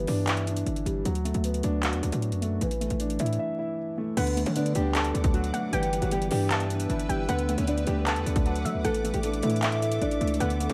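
A dark, mellow grand piano with audible action noise and a filtered tone and a heavy, punchy 808 bass open this triumphant yet dreamy trap hip hop excerpt in D major at 154 BPM with a half-time feel, joined by an electronic drum kit of hard-clipped kick, metallic hi-hats, handclaps and crash. After a break at 3.4 seconds, a small, thumb-plucked nylon-string guitar carries the melody through low-pass filtering and delay from 4.2 seconds beside a lo-fi, warbling sawtooth pluck with chorus in the background. A cloudy, detuned granular pad adds blurred sustained chords from 4.9 seconds, the whole piece set in light digital reverb with vinyl crackle.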